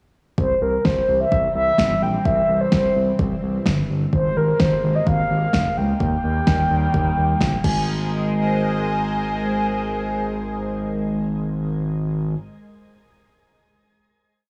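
A mellow, horn-like synth lead carries this short, complete synth-pop piece, its round, sawtooth tone softened by chorus, vibrato and a shimmering reverb as it states call-like motifs between Bb4 and Ab5. Set in Ab major at 128 BPM in a straight 4/4, the mood is nostalgic and wistful, moving through C, Abadd9 and Eb. Beneath it, a smooth gliding synth bass pulses in eighth notes with portamento and vibrato, sitting up front, while a phased analog pad swirls and evolves with detuned, bright sustained chords. A deep house drum kit with a deep kick and fat snare drives a straight drum-machine beat until 7.8 s, after which the lead, bass and pad ring out on a final hit through to 12.4 s. The whole mix is bathed in a lush hall reverb and coloured by worn, warbling cassette tape with drifting pitch, giving it a hazy, aged feel.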